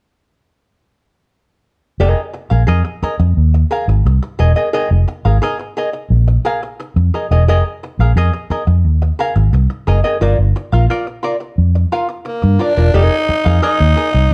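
Cool and driving, this funk passage in straight 4/4 is cut from a longer piece and rides a Fm7 groove that moves to Gm7 and settles back on Fm7. A vintage electric bass, fingered and foam-muted, sits up front with a dark, round, punchy amped tone that anchors the low end from 2.0 seconds. Alongside it, a miked and amplified archtop guitar plays picked accompaniment through a wah effect, its clean, hollow-body voice close and forward in the mix. At 12.3 seconds a growling tenor saxophone arrives as the solo melody, raspy and gritty with a clear core and light vibrato in a pop style. The sax carries the brief closing stretch over the returning Fm7, all set in a light reverb.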